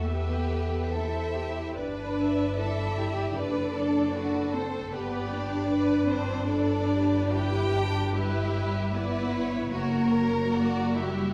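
Classical slow romantic movement for string orchestra, solemn and yearning, moving with rubato at 62-78 BPM in 4/4: an expressive, vibrato-rich violin section sings the melody over a focused second violin line, violas add accompaniment touched with portamento, and a soft-attacked, intimate cello section with light vibrato pairs with an up-front, smooth-topped double bass section underneath through Em, G, D/F# and a closing F#, the ensemble heard from further back in a recital hall's wet reverb across this 11.3-second excerpt.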